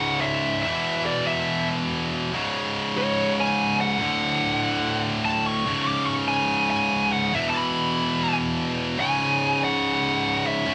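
A driving, straight 4/4 pulse in a moderately quick metal tempo underpins this dark, aggressive fragment cut from a longer piece. A heavy high-gain guitar carries the riff from the very start to 10.7 seconds, its double-tracked, distorted tone bright and pushed up front in the low register. Above it, a high-gain lead guitar plays the melody across the same span, its picked, distorted sound darker and sitting higher, in the upper range. The harmony moves through C#m, E5, C#5 and D, returning to C#5 and E5 before settling on C#5 at 9.0 seconds, giving the passage a brooding, menacing cast. Light reverb surrounds the two guitars, and the rough home demo mix has a dull, rolled-off top end.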